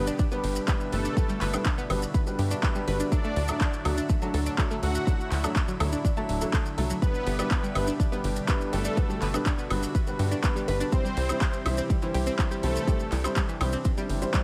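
A straight 4/4 pulse at 123 BPM drives this expansive, uplifting progressive house passage in G major, where a punchy, up-front electronic kick and an overdriven big-room dance kit of handclaps, metallic hi-hat, ride cymbal and woodblock sit with grainy, close maracas beneath a tight sawtooth sequencer bass, while a smooth, detuned supersaw melody with tape echo, a chorused, tremolo-shaded analog pad, round, filter-swept analog pluck arpeggios and boxy felt-muted upright piano stabs with audible action noise all pump with sidechain over a G, D, G, C progression, joined from 0.5 s by a very quiet reversed, granular swelling texture, all in light reverb.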